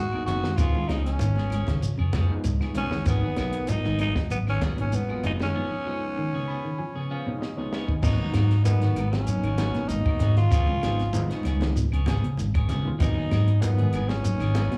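A round, punchy hollow-body bass sits up front in this funky, defiant afrobeat excerpt at 97 BPM in G# dorian, while a breathy, raspy tenor saxophone carries the melody with slapback echo over a G#m7 to C#7 vamp. Behind them, a slightly broken-up guitar plays arpeggios, a clean picked guitar adds stabs, and a barky, overdriven reed electric piano with fast tremolo comps throughout and fills the break from 6.2 seconds. A compact cocktail kit with a high-tuned snare and rolled-off top, a drum fill at 7.4 seconds, grainy shekere, ringing congas and woody claves drive the groove, all heard as a live gig through the venue's PA with club reverb and small room ambience.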